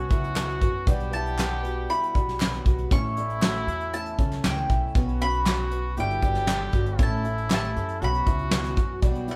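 An up-front brushed drum kit with a fat snare and punchy kick drives this stirring, wistful indie folk excerpt at 118 BPM in B minor, where a mellow, round picked mandolin carries the melody over a nasal, straight-muted trombone second line with light vibrato, a woody, thumpy pizzicato upright bass, a shimmering, boxy twelve-string acoustic guitar, dark upright piano arpeggios, a very quiet dark grand piano, a reedy, breathing hand-pumped harmonium holding chords, and crisp, distant group handclaps from 0.4 to 8.6 seconds, all played live in one room with moderate reverb.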